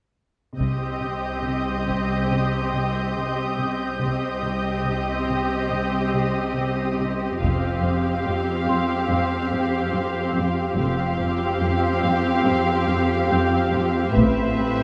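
Drenched in a huge ambient reverb with an 8.6-second decay, this recording sits in a vast, echoing space that lends a brooding cinematic suspense score an ominous, uneasy cast. At 71 BPM in a straight 4/4 and in C minor, muted strings enter at 0.6 seconds, moving from C minor through Fsus2 to A minor add9. A studio violin section carries the melody in a veiled, con sordino tone with vibrato, while a close symphonic violin section traces a second line and the violas hold an accompaniment with a smooth top. Below them, one cello section plays a dark riff and another, set in the background, joins a lush double bass section on the bass, all with soft attacks. A further muted studio violin section adds a high texture until 7.0 seconds, a very quiet, bell-like celesta with hard felt hammers and a vintage, band-limited sweetness glints above from 1.9 seconds, and background taiko drums struck with heavy sticks sound beneath. 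The passage is cut from a longer piece.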